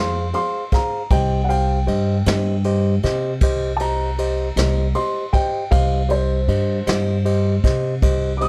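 Smoky and brooding, this short slow blues in C minor moves at 52 BPM in a 12/8 metre with a straight feel, cut from a longer piece. A dark upright piano takes the spotlight from the start, its mellow, woody voice soloing up high throughout the 8.5 seconds. Beneath it, a tine electric piano supplies the accompaniment, sounding worn and slightly out of tune through its built-in speakers. The upright bass is plucked and sits up front with a warm, woody tone and steel strings, carrying the low end. A vintage drum kit played with brushes joins at 0.3 seconds, its tight kick, medium-tuned snare and ride cymbal heard with a rolled-off top in a roomy studio space. The harmony moves from F minor to C minor, and the recording itself carries little reverb.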